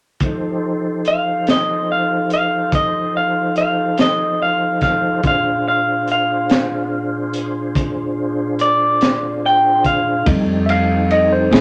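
A crunchy breakbeat drum kit sets a laid-back, gritty 12/8 slow blues pulse at 48 BPM in F mixolydian, its punchy kick, high-tuned snare and dark cymbals saturated and rolled off, while a soft, flute-like tonewheel organ holds sustained chords over F7 and Bb7 through chorus vibrato and a slow rotary speaker. From 1.1 seconds an electric guitar through a small old amp carries a picked, slightly broken-up, compressed lo-fi melody up front in a moderate club reverb. At 10.3 seconds, over an F9 chord, a barky tine electric piano takes a clean solo through a combo amp as a woody pizzicato upright bass enters, in this cut from a longer piece.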